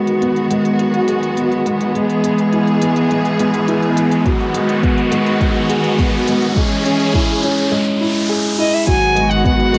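Piano and strings electronica, cinematic and melancholic, cut from a longer piece, opens with a dark, mellow grand piano riff with analog delay over sustained, vibrato-rich string chords that pump under sidechain and bloom in plate reverb, while smooth electronic hats tick quietly and an electronic riser builds from 1.2 seconds. A deep electronic kick drum enters at 4.3 seconds as the chords move through G#m7, E and C#m. Near the end a focused solo violin carries the melody up front and a round sine sub bass arrives at 8.9 seconds, all framed by a short booth ambience and the soft grain of a home cassette recording.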